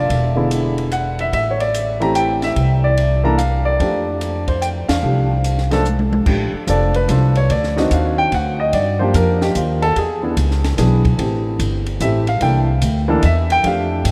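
A swung waltz in three gives this playful, relaxed jazz piano trio a gentle lilt, set in a vast, echoing cathedral-like space and cut from a longer piece. A polished, present baby grand with short sustain carries the melody up front beside a woody, pizzicato upright bass with steel strings, while a compact cocktail kit adds a dry touch with dark cymbals, a high-tuned snare and a punchy kick. The band hits an accent at 4.8 seconds, the drums play a fill just before 6.3 seconds, and the piano then takes a solo to the end.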